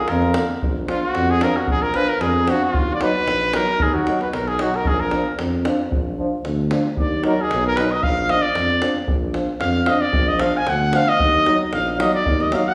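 Fiery and virtuosic, this Balkan brass band passage moves at 113 BPM in a swung 2/4 in Bb phrygian dominant, alternating between Bb and Ebm. A mellow flugelhorn sounds only in the opening 0.5 seconds before the up-front trumpet takes its solo from 0.6 seconds, clear with light vibrato, a soft attack and a smooth top. Beneath it, a soft-edged tuba carries the bass, a tight, close davul drives the percussion, and two background euphoniums accompany, one vintage-toned and one vibrato-laden, all set in the wet bloom of a recital hall.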